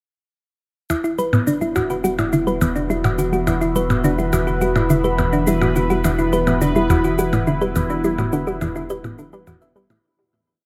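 A straight 4/4 machine pulse at 105 BPM of cabasa and low woodblock blips, touched by tape echo, carries this hypnotic, cosmic piece of ambient, sequencer-driven space music in E minor, where an up-front, tine-like FM thumb-piano-style pluck cycles a 9-step arpeggio through chorus, cassette tape and tape echo under a filter sweep, a nasal, wave-folded analog pluck repeats a 6-step riff drifting against the bar, a deep triangle-and-sine bass holds E, a swirling, detuned phased pad fades in on Esus2 alongside a resonant, bubbling stepped-filter texture in the background, and a huge ambient reverb surrounds the music until it fades out from 7.0 to 10.0 seconds.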